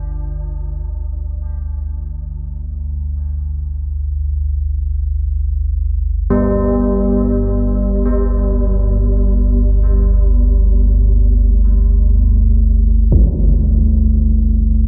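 In free time, this cavernous, ominous dark ambient drone, cut from a longer piece, rests on a deep, rumbling, up-front synth drone with a slow attack, built-in reverb, subtle chorus and a filter sweep running through its full 14.9 seconds, while clangorous bronze church bells with a beating minor-third overtone ring out delayed arpeggios until 13.4 seconds, with a huge, dark, low-pass-filtered impact landing at 13.1 seconds just before they stop, all set in light reverb.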